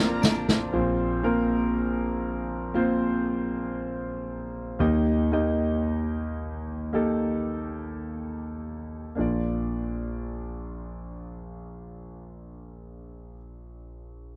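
Pop ballad, tender and emotional, opening with a brief drum fill on a roomy, up-front snare touched by a very quiet, jingly tambourine, while a bowed violin section with expressive vibrato, a barely audible shimmering retro pulse-width pad and compressed, spring-reverbed clean electric guitar arpeggios in the background sound only in the first moments. The guitar stops by 1.3 s, leaving a clear, open concert grand piano with deep bass to carry the accompaniment alone until 14.4 s as the music slows down. Light reverb gives the whole a gentle studio glow.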